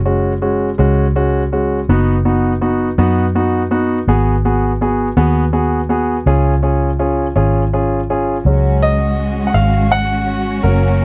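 A clear concert grand piano accompanies this swaying, heartfelt pop fragment in 6/8 at 55 BPM, its intimate, polished tone carrying long sustain and audible action noise as it moves through F#sus2, B/F#, G#m7 and C#. Underneath, a dark, round, foam-muted electric bass sits up front. At 8.5 s the piano takes a solo over a C#sus4 while a lush, bowed string section enters with vibrato, all captured in a dry, close 1970s-style studio sound.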